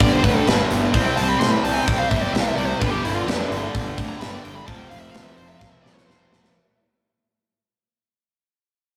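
A straight 4/4 heavy metal groove drives this dark, epic fragment, where a gritty, up-front acoustic drum kit with a tight kick and big-room sound anchors two bright, picked distorted rhythm guitars, one sitting in the background, and a growly, fuzz-overdriven bass, while a warm, high-gain lead guitar solos across the whole passage amid light reverb and rough rehearsal-room tube saturation, the music fading out throughout and closing with a drum fill from 5.6 seconds.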